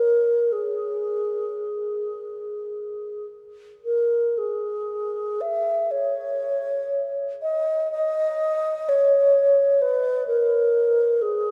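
This classical fragment is a free, expressive solo for unaccompanied alto flute, with a yearning, meditative mood and a rubato feel that lets the phrases breathe. A wooden-headed alto flute plays alone throughout, from 0.0 to 11.5 seconds, moving within a compact register from G#4 to E5. Its tone is pure and mellow, held straight, with clearly tongued notes that sound up front yet carry a slightly distant quality. A brief opening passage gives way to a new section at 3.9 seconds, where the music settles into C# dorian. A cathedral reverb with a 5.7-second decay surrounds the flute, and the church or concert hall setting gives every phrase a long, hovering tail.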